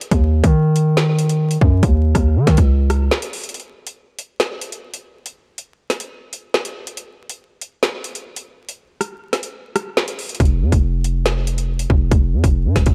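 A heavy, aggressive distorted 808-style bass with a sine body, noise layer, fast attack and decaying tone hits up front from 0.1 s, falls away at 3.1 s and returns at 10.4 s, alongside an overdriven electronic drill kit of hard-clipped kick, woody snare, rim click and metallic hi-hats in a half-time 140 BPM groove, with vinyl crackle and digital ambience around this tense, menacing hip hop excerpt.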